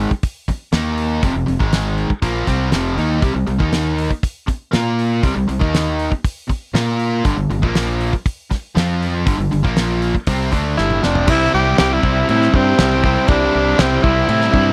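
A straight, driving 4/4 at 120 BPM carries this confident classic rock excerpt, where a damped 70s drum kit with a fat snare and tight kick sits up front beside a biting overdriven guitar riff, a compressed distorted guitar adds its own riff in the background over a punchy, bright fingered bass, and as a drum fill begins at 10.8 seconds a raspy, gritty tenor saxophone takes the solo with scooped notes and vibrato while a barely audible tonewheel organ with slow rotary shimmer holds chords from 11.3 seconds in a dry, close 1970s-style room.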